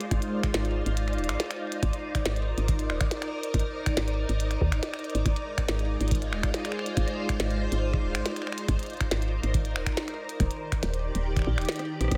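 A round, woody FM bass sits up front in this playful, glitchy IDM excerpt at 140 BPM in Ab lydian, paired with a deep, tape-warm electronic kick re-recorded in a large room. Above them, a silky string machine holds mellow sustained chords through phaser and ensemble chorus, moving from Ab6 to Ebmaj7 at 10.4 s. An overdriven, clicky kit of finger snaps, hi-hat, rim click and tiny snare adds reverb and delay, with a flickering, grainy texture in the background, and a drum fill arrives at 11.7 s.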